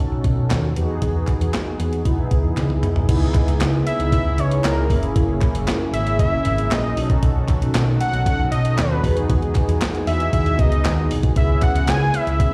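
This early-eighties boogie funk excerpt moves at a slick, funky 116 BPM in 4/4 with a straight feel in C# minor, heard as if through a venue's PA at a live gig with recital-hall reverb around it. A clean 12-bit drum machine sits up front with a thumpy kick, a medium-tuned snare, hi-hat, handclaps, toms and crash, its sampler-style sound tape-warm and re-recorded in a small room, while a very quiet group handclap adds a hollow, human touch. A round, punchy hollow-body electric bass, fingered and dark, anchors the low end alongside mellow synth brass built from detuned sawtooths with ring modulation, a filter sweep, chorus and slapback echo. A drum fill from 2.6 to 3.1 seconds leads into the second section, where a very quiet, lush unison pad enters with slow-attack chorused chords. A fat analog lead arrives at 3.9 seconds, its warm detuned sawtooth carrying a sub octave, vibrato, a filter sweep and slapback echo, over chords cycling through B7, Emaj7, C#m7 and F#7.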